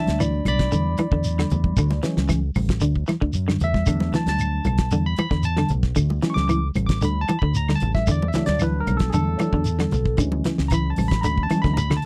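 Hypnotic and funky, this short afrobeat cut rolls along in a straight 4/4 groove, swaying between E7sus4 and Dmaj9#11 chords. A barky, bright tine electric piano takes the solo throughout, run through a combo amp with a phaser coloring its tone. Beneath it, a semi-hollow electric guitar picks clean arpeggios in a low register, shimmering with lush chorus, while a fingered electric bass adds a dark, round foundation. The damped 70s drum kit sits up front with a fat snare and tight kick, closing with a fill from 11.5 seconds. A grainy shekere fills out the percussion, with congas and woody claves further back. The whole recording has a dry, close 1970s studio sound, and it is cut from a longer piece.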